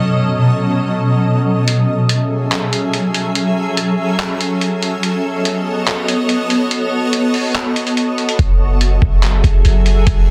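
This atmospheric cloud-rap excerpt opens on a granular cloud pad holding sustained chords on B7 under a filter sweep, its blurred, evolving tone softened by a slow attack, long release and built-in reverb, with sidechain pumping giving it a pulse. At 1.7 seconds a lo-fi sampler-style kit arrives with handclaps and hi-hat, sounding pitched down, muffled and tape-tinged, as though re-recorded in a small room. The pad shifts between F#m9 and B7 in F# dorian, at 143 BPM in a half-time 4/4 feel, and the mood is melancholic and ethereal. At 8.4 seconds a thumpy kick joins, along with a clean 808-style bass on a deep, boomy sine F#1 with a fast attack and dark decay, set up front alongside the pad. The mix is otherwise fairly dry, with a dense, heavily limited modern master.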